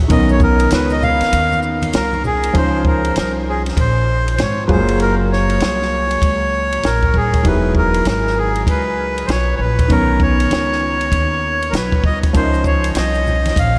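Jazz-hop with a smooth, relaxed swing, this cut from a longer piece sets a reedy, clear accordion melody up front, carrying a diffuse ambient delay, over a woody vintage upright piano with long sustain and a thumpy pizzicato upright bass on gut strings. A compact cocktail drum kit sounds dry and natural, with dark cymbals, a high-tuned snare and a punchy kick, while close, acoustic maracas and congas sit in the background until 2.5 seconds and return at 12.3 seconds. The accordion opens with a solo, with a break arriving at 1.3 seconds, before the harmony moves through major-ninth and add-nine chords, and the dreamy mix is soaked in huge reverb.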